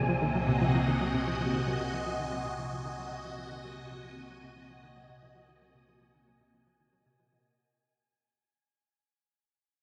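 A swirling, vintage string machine sits up front, holding bright, phased chords over a Cm7b5 harmony in this mysterious, hypnotic stretch of ambient, sequencer-driven space music, cut from a longer piece. Beneath it, a hollow, bouncy square-wave pluck repeats a riff through chorus and tape echo, while a round analog bass hums deep in the background and a breathy, wind-like noise texture drifts high above with its own dark reverb. The whole mix is soaked in a wet plate reverb and heavy echo, and the pluck, the bass and the recording itself fade out across the 7.5 seconds.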